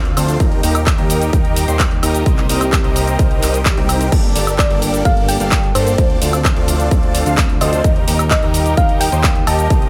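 Festival progressive house with a powerful, euphoric lift, cut from a longer piece and driven by a straight 4/4 pulse. A lush, airy unison pad holds sustained chords in the background under sidechain pumping, while a fat analog bass, detuned and thick with a filter sweep, pumps along beneath it through a progression moving from Eb through Cm7, Gmadd9 and Dm7 back to Eb. A huge supersaw lead carries the riff from 0.2 seconds, bright and compressed, colored by phaser and dub echo. The punchy electronic kick sits up front, joined by a pop kit of cabasa, crash, handclaps, woodblock and bright hats in studio reverb, and a very quiet electronic swell sounds around 3.7 seconds. At 4.6 seconds a round, tine-like pluck resembling a thumb piano enters with a gentle, dark melody, softened by chorus and dub echo, all set in light digital ambience.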